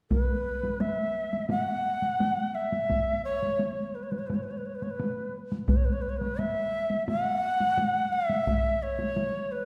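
The recording sits in a reverberant recital hall, with a long, lingering tail that suits a church or concert space, and the piece is cut from a longer work. This is a driving, powerful Japanese traditional taiko ensemble performance in straight 4/4 at 86 BPM. Two taiko ensembles carry the percussion: one struck with hard sticks that rings out into the live room, sitting up front, and another played with heavy sticks that sounds close and dry. Up front, an end-blown bamboo shakuhachi carries the melody between B4 and F#5, its tone breathy and reedy with lifted highs, a soft attack and vibrato. The drum parts drop out at 8.6 and 9.3 seconds, leaving the shakuhachi to sound on until 9.7 seconds.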